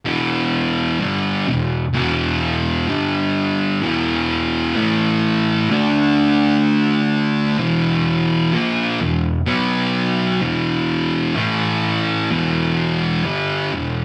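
A light reverb and the feel of a band playing live in one room surround this short cut from a longer metal piece, which sits in E minor at a slow 64 BPM in a straight 4/4. The mood is ominous and hypnotic, carried by a single thick fuzz guitar playing solo from 0.0 to 14.0 seconds. Picked and double-tracked, the electric guitar sits up front with a warm, distorted grit, ranging from E2 up to D4. Its first passage opens on Em and moves through G5, E5, A5 and D5 power chords. At 7.6 seconds a second passage begins, cycling through E5, B5, E5 and A5 before settling back on Em.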